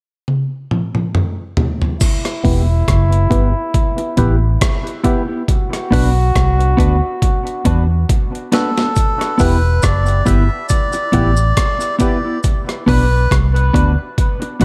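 A gritty, overdriven breakbeat kit opens this deep, spacious dub reggae excerpt with a fill at 0.3 s. Its thumpy kick, medium-tuned snare, rim clicks, hi-hat, toms and crash sit up front at a slow 69 BPM in E minor, with a lightly swung sixteenth feel. At 2.0 s the harmony settles on Em and Bm as a clear, vintage trombone carries a jazz-style second line through dub echo, a cabasa adds a brief touch, and from 2.4 s a mellow electric guitar joins with spring reverb, filtering and echo. A hollow, percussive organ stab treated with chorus, phaser and echo punctuates the groove, while a dark, round, foam-muted electric bass anchors the low end, loud and punchy. During another drum fill, as the filter sweep across the middle section nears its end, a reedy, breathy melodica takes the melody at 8.5 s, trailing dub echo, and the cabasa returns in the final section. The mix is dry in room sound but thick with echo.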